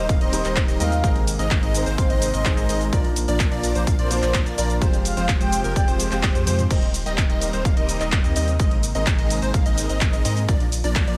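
Punchy, up-front electronic kick and a huge, euphoric phased supersaw riff drive this uplifting, anthemic festival progressive house drop in Eb major at 127 BPM, cut from a longer piece, where a deep saturated sub bass, a catchy detuned plucky arpeggio, a very quiet lush pad, a layered big-room kit of claps, hi-hats, shaker, crash and toms with a drum fill at 6.2 seconds, and a dark, mellow grand piano with audible action noise support a breathy, flute-like lead with vibrato that sings until 5.9 seconds, all moving through Eb6, Abadd9, Bb and Fmadd9 chords under sidechain pumping and digital delay on several parts.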